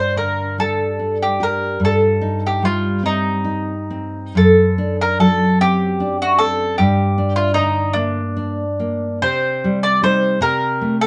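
A light reverb surrounds this excerpt from a longer romantic duo in G minor, moving in a slow, rubato 6/8 at 49 BPM in dotted quarters with uneven beats. Up front, the mandolin carries an elegiac melody with a round, double-string tone, while the full-bodied nylon-string guitar fingerpicks a deep classical accompaniment, its finger squeaks audible. Both play throughout the 11.1 seconds as the melancholic harmony moves through Cm/G, D7/F#, Gm and Cm before resting on Am/C.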